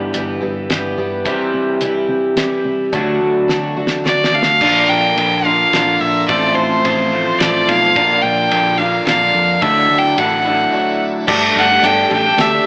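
Warm and hopeful, this short folk rock and heartland rock passage, cut from a longer piece, moves in a lilting 3/4 with a straight feel and sounds like a live gig heard through a club's PA, coloured by an AM radio tone and light small-room reverb. From the start, a picked twelve-string acoustic guitar shimmers with boxy, octave-doubled picking and audible finger squeak, while an electric guitar through a small old amp plays a bright, twangy, slightly broken-up riff treated with phaser and slapback echo. Underneath, a hollow-body short-scale electric bass gives a round, dark bottom, and a cloth-damped drum kit thuds along with a fat snare, tight kick and dark cymbals, adding a fill just before the fiddle arrives. At 4.1 seconds a clear, biting fiddle takes the melody up front with light vibrato and an airy, earthy bow, joined shortly after by a very quiet tonewheel organ holding piping chords through a slow rotary speaker as the harmony shifts to Bb and F/A. 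After a brief break, a very quiet, gritty overdriven reed electric piano enters at 11.3 seconds on a Gsus2 chord, lending a barky edge to the closing moments.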